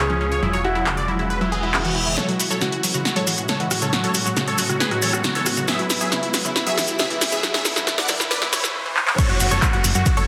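A detuned supersaw stab leads this driving, emotional uplifting trance excerpt in F# minor at 137 BPM, its punchy sawtooth melody up front and colored by phaser, sidechain pumping and dub echo. Beneath it a shimmering, ethereal pad holds sustained chords with an octave-up shimmer, chorus and built-in reverb, while a bright unison pluck spins arpeggios and a soft felt-muted upright piano, with audible action noise, offers a brief intimate second line before stopping at 2.1 seconds. A round, dark FM bass appears at the opening and returns at 9.3 seconds, and a tape-colored analog drum machine enters at 0.9 seconds with a punchy snare, handclaps, rim clicks, hi-hats, ride and crash cymbals. After a reverse cymbal, a long build-up on an F#madd9 to E progression brings grainy maracas in the background, quiet risers and downlifters, and an extended drum fill. The drop at 9.2 seconds adds a punchy kick drum and a second mellow unison pluck line higher up, all set in a wet digital room within a dense, heavily limited modern master.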